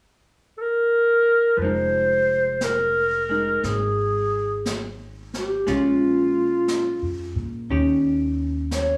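Jazz ballad in F minor at a slow 59 BPM with a gentle swing, wistful and melancholic, cut from a longer piece, where a breathy, mellow clarinet with light vibrato and subtone enters alone at 0.6 s and sits up front. At 1.6 s the rest of the band joins over Fm7, moving to Bbm7 and Eb7: a clean, dark hollow-body electric guitar picks the accompaniment, a woody pizzicato upright bass anchors the low end, and a distant, roomy brush kit plays brushed snare and hi-hat. The sound is bathed in a wet large-studio reverb over a small-room ambience.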